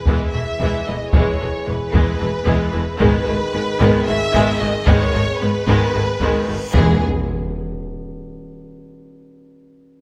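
Moderate scoring-stage reverb surrounds this heroic, adventurous fragment of epic orchestral film score, moving at 225 BPM in eighths in a straight 7/8 in E major, shifting from E to G#m and back to E. Expressive, vibrato-laden violins carry the melody over a mellow, distant French horn section holding chords. Intense violas provide accompaniment, while a smooth, even second violin line and lush cellos and double basses sit in the background alongside hard-stick taiko drums. At 6.4 seconds a huge, bright reverse cymbal and sub drop leads into an impact at 6.7 seconds, where round soft-mallet timpani strike up front, and the taiko continues until 7.8 seconds.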